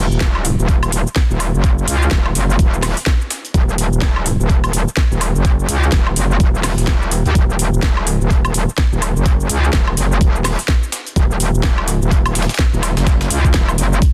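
A dry, dense and heavily limited bass house excerpt with a bouncy, aggressive swung groove, led by an up-front metallic wobble bass that is distorted, chorused, tube-saturated and pumping against a knocking electronic kick, while a tape-warm garage kit of cracking snare, metallic hats, shaker and woodblock sits beneath, joined by a very quiet, gritty breakbeat sampler-style kit with a high-tuned snare.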